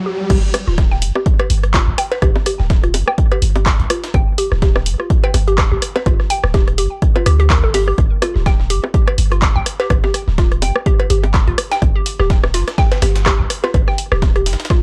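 Minimal techno at 125 BPM with a light 16th-note swing, sparse and cool in mood, heard as a cut from a longer piece with a dry, gritty cassette-tape character. A hollow, warbling square-wave pluck plays a bouncy riff between F4 and G5 through chorus, analog delay and sidechain pumping, while an up-front sub bass with a pitch-drop attack sits deep beneath it, from D1 to D2, and pumps under its own sidechain compression. The brief break gives way to the drop at 0.3 seconds, where an up-front analog kick re-recorded in a large room leads a punchy drum machine of crash, handclaps and hi-hat, a layered rim click, bongos and cowbell, and a pitched-up, compressed breakbeat kit whose high-passed hi-hat and high-tuned snare stay in the background.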